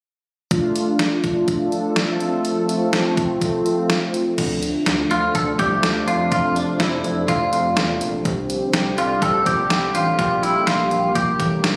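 A straight 4/4 pulse at 124 BPM from a thumpy, up-front, detuned 8-bit digital drum machine drives this melancholic synth-pop excerpt in D minor, where mellow, brassy synth brass with chorus accompanies until 4.3 s over a bright, sweeping resonant pad, a hollow, rubbery square bass enters at 4.4 s, and a twangy clean electric guitar carries the melody through digital delay from 5.1 s, the whole set in a lush hall reverb and captured on a phone in the room.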